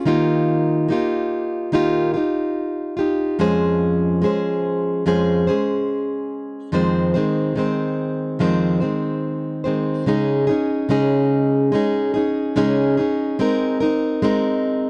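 A fingerpicked, plugged-in steel-string acoustic guitar plays alone and up front in this longing, melancholic pop excerpt at 72 BPM, moving through Ebadd9, Dbmaj7/F and Fm7 before shifting at 10.1 seconds to Dbsus2 and Abadd9, all captured in a dry, close 1970s-style studio sound with light reverb.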